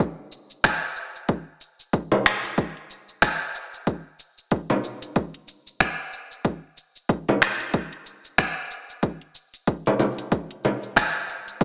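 Heard through a small-speaker sound wrapped in a lush hall reverb, this meditative, warm downtempo excerpt moves at 93 BPM in 4/4 with a 58% swing on the sixteenths. A punchy, layered electronic kick and a produced afro-pop kit of cabasa, finger snaps and metallic hi-hats sit up front throughout. A small, bright frame drum played with soft hands joins at 2.1 seconds, its compressed, saturated tone carrying until 10.8 seconds.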